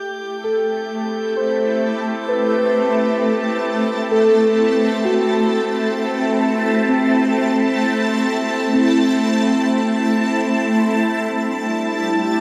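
Luminous and weightless, this ambient excerpt at 65 BPM in 3/4 sets a shimmering, ethereal pad up front, holding sustained chords from Am7 to G5 with octave-up shimmer, chorus and phaser, while a glassy texture of drifting overtones sits in the background until 10.6 seconds and muted, felt-like synth keys play dark, intimate arpeggios from 0.4 seconds, all bathed in a vast, echoing cathedral reverb.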